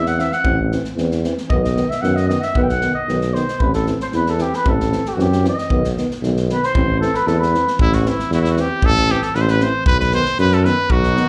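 Over a straight two-beat pulse from a natural acoustic drum kit with a punchy kick and medium-tuned snare, this restless, fiery Balkan brass band excerpt from a live club gig opens with a warm, roomy flugelhorn playing solo until 7.8 seconds, when a clear, up-front trumpet takes the melody over a vibrato-tinged tuba bass and two background euphoniums, one mellow and one dark and smooth, with plate reverb and slapback echo on the flugelhorn, trumpet and euphoniums.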